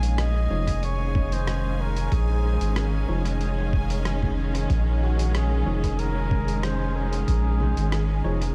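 Ambient dub at 93 BPM in 4/4, meditative and hazy, cut from a longer piece. It rests on a Dbadd9 chord, with lush bowed strings holding sustained chords and a round, deep analog bass up front; a muffled, pitched-down sampler kit of congas, hi-hat and rim click carries studio reverb and dub echo beside a thumpy electronic kick from 0.7 to 7.4 seconds, while a veiled, distant bucket-muted trumpet sings a solo melody through dub echo, a worn, slightly out-of-tune barky electric piano adds lightly overdriven stabs, and a bright, bubbling stepped-filter texture with chorus drifts in the background.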